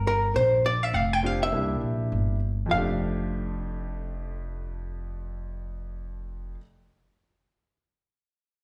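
Small-group swing and bop jazz at 203 BPM in F major, relaxed and warm, this brief excerpt cut from a longer piece features a dark, clean, picked hollow-body archtop guitar carrying the melody up front over a woody pizzicato upright bass, with a clear, intimate grand piano, its action noise audible, entering on accompaniment at 1.2 seconds as the band plays live together in a wet, large studio reverb through Bb69, C9 and F69 chords.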